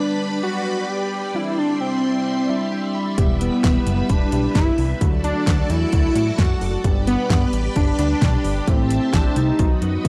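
Driving and cool, this synth-pop cut moves at 131 BPM in a straight 4/4, its chords cycling through G, Cadd9, Em, D and Am7. A fat, detuned sawtooth lead carries the melody up front, full-bodied and mellow with a sub octave and vibrato, while a barky, bell-like tine electric piano comps beneath it with a subtle chorus and slips in a short fill at 2.3 seconds. A vintage string machine holds sustained violin chords with a slow attack, shimmering through its ensemble chorus. At 3.2 seconds a thick, dark analog bass arrives with a plucky filter and ring-modulated edge, joined by a punchy, layered electronic pop kit of fat snare, metallic hats and toms that ends on a drum fill at 9.6 seconds. The dry, gritty hardware sound and transformer saturation give the whole mix a hard-edged bite.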